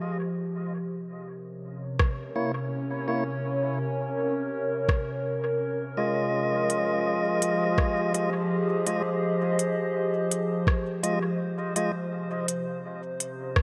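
Set in a wet concert-hall reverb, this meditative, deep ambient dub excerpt in F minor moves at 83 BPM with a light 16th-note swing. A warbling, nostalgic lo-fi pad with chorus and phaser sustains Fm7 and C7 chords from the start, then a soft, up-front electronic kick and crisp hi-hats with rim clicks bathed in dub echo enter at 2.0 seconds, while a lightly overdriven tonewheel organ with key click and a stopped rotary speaker adds echoing stabs from 2.4 seconds.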